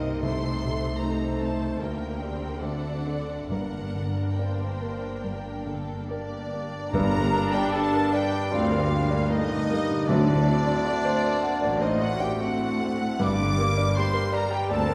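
A polished, up-front grand piano carries the melody through this passionate, brooding romantic movement in G minor, moving with rubato at 67-82 BPM over lush bowed strings, with violins also playing the melody and a second violin part, a rich viola accompaniment, cellos with expressive portamento and a double bass section in the background, and mellow French horn chords, while very quiet timpani enter at 3.5 seconds, an airy flute and a soft-attack clarinet join at 6.1 seconds, and a very quiet tuba deepens the bass from 6.9 seconds, all set in a reverberant scoring stage heard from further back in the room.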